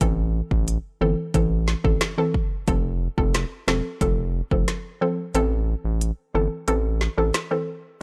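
A dry, gritty recording with little reverb puts every part up front in this short dancehall excerpt, cut from a longer piece, with a tough, sultry mood over a straight four-beat groove. A hollow, bouncy square-wave pluck carries the accompaniment, its detuned tone edged with a noise layer and treated with chorus and phaser, each note snapping in and decaying. Beneath it, a round analog bass sits low and mellow, its fast attack giving way to sustained, deep notes. The electronic afro-pop drum kit pairs a deep kick and woody snare with crisp hi-hats and rim clicks. The harmony moves from A minor to F and back to A minor, and the kick drops out from 5.3 seconds, leaving the other drums, bass and pluck to carry the final stretch.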